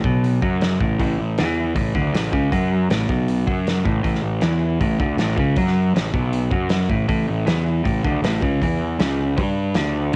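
Indie rock with a carefree, jangly mood, cut from a longer piece, where an overdriven electric guitar picks a low riff while a fuzz-toned picked bass, dark, round and punchy, sits up front beneath it for the full ten seconds. A loose acoustic drum kit in a small room, with a fat snare, tight kick and rolled-off top, plays hi-hat, kick and snare close to the listener. The whole thing carries light reverb and the homespun grain of a cassette home recording, resting on a single A chord.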